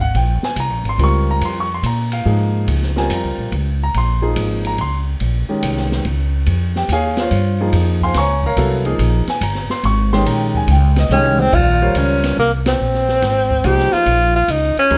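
Swinging in 3/4 at 142 BPM, this searching, spiritual modal jazz piece in Bb dorian opens on a Bbm9 chord, with a deep-voiced concert grand piano accompanying, a woody, thumpy pizzicato upright bass up front and an open drum kit with dark cymbals, a high-tuned snare and a boomy kick, until a drum fill at 11.1 seconds brings in a mellow, subtoned tenor saxophone melody with vibrato and a band accent lands at 12.6 seconds, the whole set in light reverb.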